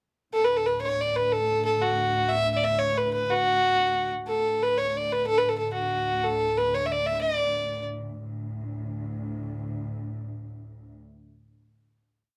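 Bright and lively, this short Celtic folk jig in 6/8 moves at 122 BPM in D major, tuned to A4 = 438 Hz, with a single up-front fiddle playing a dark, woody, motif-based melody with light vibrato from 0.3 to 7.8 seconds over a veiled, muted studio string section holding a bowed low drone from 0.3 seconds that carries through the final chord from 8.2 to 10.2 seconds and sustains until 11.0 seconds, all set in light reverb.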